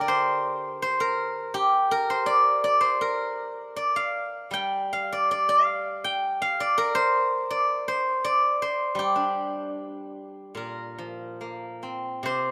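The recording has the plain, slightly rough character of a home demo, with a light reverb around a single instrument that sits up front. It is a short excerpt of Chinese traditional solo music, cut from a longer piece, for a steel-string zither plucked with fingerpicks. The zither's tone is bright and silvery, and its acoustic notes ring out across a span from the low Bb2 to G5. The music moves in a loose 2/4 with a rubato feel, giving it a contemplative, longing mood. A new section begins at 10.6 seconds and carries the passage to its close at 12.5 seconds.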